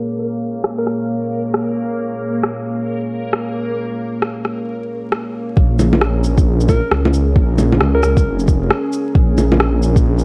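With a swung sixteenth feel, an up-front electronic rim click, bongos and shaker carry this melancholic, wistful future garage excerpt from 0.6 s, while a dark, detuned analog pad holds a Bbm7 chord with chorus and sidechain pumping, and a reversed, granular backwards texture drifts dreamily beneath a filter sweep until 5.6 s. At that point a soft electronic kick arrives alongside a menacing, saturated detuned saw bass that swells and pumps. A round, warbling FM lead with a keys-like touch appears in brief phrases through chorus and analog delay, all set in light digital ambience with vinyl crackle and a low-pass filter.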